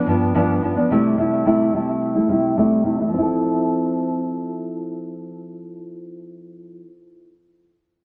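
Dreamy and sunny, this short indie pop fragment, cut from a longer piece, moves in a straight 4/4 feel. A fingerpicked steel-string acoustic guitar plays alone throughout its 6.9 seconds, sitting up front with a full-bodied, jumbo tone. Subtle chorus, vibrato, a low-pass filter and tape echo color the guitar, and a filter sweep passes over it during the opening 3.1 seconds. The harmony moves from G7 to C6, then settles on Fmaj7 at 3.1 seconds as the passage shifts into a new section. A moderate spring reverb gives the sound a sense of space.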